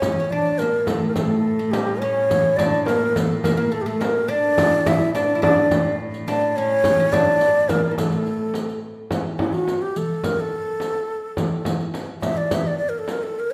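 In a straight four-beat pulse, this festive, passionate Turkish makam ensemble piece, cut from a longer work, sets a breathy, mellow ney with vibrato up front on the melody over a deep frame drum, clay-shelled darbuka struck with hard hands, and a riq's bright jingles. A woody, fretless oud with double strings carries a bright second line and a gut-string cello holds a reedy drone in the background until the oud drops out at 8.8 seconds and the cello at 9.2 seconds, leaving ney and percussion for a new section. The whole ensemble sits in the wet wash of a recital hall.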